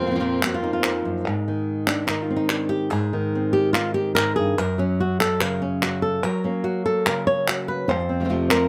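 Mournful and passionate, this flamenco excerpt at 145 BPM opens on Fsus4 with a dark, expressive bowed violin sliding with vibrato and a soft attack for its first second, while an up-front fingerpicked flamenco guitar carries the melody with fresh strings and audible finger squeak, a second flamenco guitar adds stabs, and crisp palmas hand claps enter at 0.4 s before a nylon-string guitar solo runs from 1.3 s over Ab, Gb and F, captured by close, detailed microphones with light reverb.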